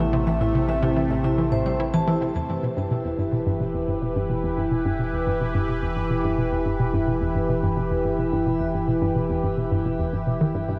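Cosmic and mysterious, this sequencer-driven space music in E minor moves at 108 BPM in a straight 4/4, shifting from A minor to E minor at 2.4 s, where a filter sweep on a synth arpeggio sound begins. An evolving, detuned, phaser-washed pad sits up front with sustained chords. A hollow, bouncy square-wave pluck with a sub octave and chorus carries the riff, while a round sine sub bass holds the low end. A dark, ringing vibraphone adds delayed arpeggios under shimmer reverb until 2.1 s, all placed in a vast, echoing space with an 8.2-second reverb tail, in a short cut from a longer piece.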